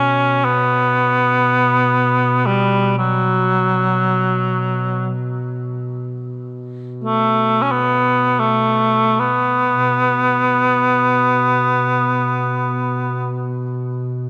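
Longing and mournful, this Caucasian folk lament sets a mellow cor anglais melody, played up front in a classical manner with light vibrato and soft attacks, over a close-miked duduk drone on B2 with scooped notes, the pair steeped in a wet church reverb lasting 3.8 seconds, with the cor anglais stopping at 13.5 seconds while the drone holds until 14.3 seconds in this fragment of a longer piece.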